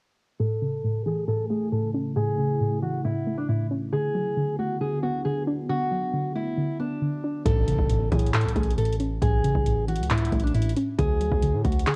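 Over a half-time 4/4 pulse at 136 BPM, this dreamy yet triumphant trap cut in A major opens with a dark, woody fingerpicked steel-string acoustic guitar melody and a soft, round pluck accompaniment under a filter sweep, joined at 1.2 seconds by a deep, moody, detuned ambient pad, before a booming, overdriven analog drum machine with handclaps, metallic hi-hats and deep kick arrives at 7.5 seconds alongside a punchy, heavy 808-style bass and a background impact, all carrying a cassette-tape, home-recorded character with light reverb.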